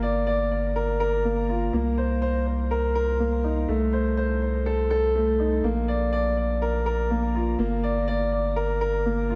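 A dark concert grand piano and a round analog bass sound together from the opening moment, setting a hypnotic, intimate mood for this piano and strings electronica piece in a steady, straight 4/4. The piano carries a repeating riff in its middle register, its mellow, boxy tone sitting up front with a long sustain, while delay and a shimmer reverb trail each phrase into a glowing haze. Beneath it, the analog bass holds low notes with a smooth, sine-like roundness, a fast attack and sustained body that gives the harmony a deep, velvety floor. The chords move from Gm7 through Cm7 and Cm6 to Bb before settling on Gm, lending the loop a brooding, introspective pull. A moderate recital hall reverb wraps the performance, and the passage, cut from a longer piece, runs its 9.4 seconds as a single unbroken section.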